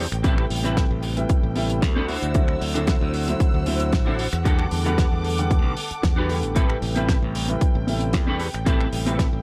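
Nu-disco with a cosmic, sensual mood, cut from a longer piece in a straight 4/4 groove over a cycle of Am9, D9, Em11 and back to Am9. A punchy, overdriven electronic kick sits up front over a dry, damped 70s kit of finger snaps, hi-hat and fat snare, while a bright, growly fingered bass anchors the low end. A twangy clean guitar riff with ensemble chorus and slapback echo, a boxy, long-sustaining grand piano and lush, woody bowed strings with vibrato fill out the harmony, the piano and strings pumping with sidechain in a small room.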